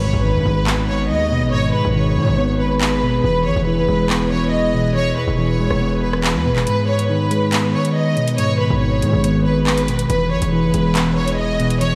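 Ominous and cold, this drill cut from a longer hip hop piece moves at 140 BPM in a half-time feel in G# minor, with a lush, bowed symphonic violin section carrying the melody up front through a diffuse ambient delay over a dark, clean, fingered electric guitar and an airy, breathy pad with chorus sitting in the background. A distorted, saturated 808-style bass drives the low end with heavy, aggressive tone while the chords shift between G#m and E. A very quiet electronic impact opens the passage, the drill kit of handclaps, metallic hi-hats and rim clicks enters at 0.7 s, and the kick drops out between 6.7 and 7.5 s, all within a dreamy mix soaked in hall reverb.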